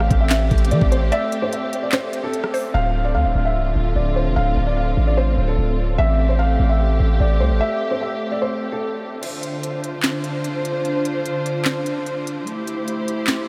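A deep, up-front 808-style bass anchors this brooding, menacing half-time trap excerpt at 148 BPM, where a soft felt-muted upright piano carries the melody through analog delay over dark, sul tasto strings moving between Am7 and Dm7, a very quiet woody synth pluck adds a second line near the start, and knocking electronic drums drop out at 2.6 seconds before returning at 9.2 seconds, all within a dreamy, reverb-soaked mix.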